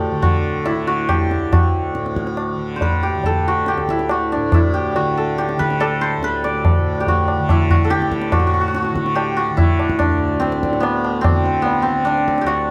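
In a straight 4/4 at 142 BPM that speeds up, this radiant, devotional Hindustani classical excerpt in raga khamaj on D places a bright, ringing, hammered santur melody up front, ranging from B3 to D5, over a softly plucked, buzzing tanpura drone and low-tuned tabla with a short ring, set in moderate studio reverb and moving into a new section at 8.3 seconds.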